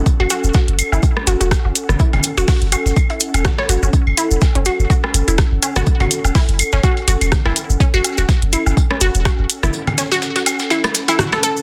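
A squelchy, resonant blip pluck carries the riff through this cool, quirky minimal techno excerpt in F# minor at 124 BPM, its bright, detuned tone treated with chorus, delay and sidechain pumping. Underneath, a punchy sine sub bass with a pitch-drop attack sits up front, pumping with the sidechain alongside a soft, tape-tinged electronic kick, both dropping out shortly before the end, the bass at 9.7 seconds and the kick at 9.4. An ethereal, airy pad with slow attack and long release drifts above on ensemble chorus and its own reverb, also breathing with the sidechain. The 16ths swing at 56%, driven by a booming analog drum machine with metallic hats and rim clicks, electronic claves, woodblock and congas re-recorded in a large room, and a gritty, sampler-style kit with a fat snare, hi-hat and tambourine set in the background. Grainy, close maracas add texture, and the whole track sits in light reverb under a dense, heavily limited modern master.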